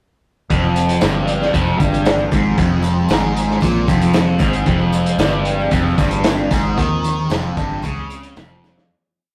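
Psychedelic rock in F minor at 114 BPM, trippy and hypnotic, built on a single F minor chord as a biting, overdriven, double-tracked guitar plays its single-note riff up front through a phaser, with a round, foam-muted fingered bass doubling the riff in a dotted figure. A muffled, lo-fi vintage kit with a tight kick and medium-tuned snare keeps a pop groove, a jingly tambourine sits very quiet, and a mellow sawtooth string-machine cello pad with ensemble chorus holds sustained chords beneath. The rough rehearsal-room sound carries tube saturation and moderate reverb, and the whole piece fades out from 6.8 seconds, with a drum fill at 8.6 seconds.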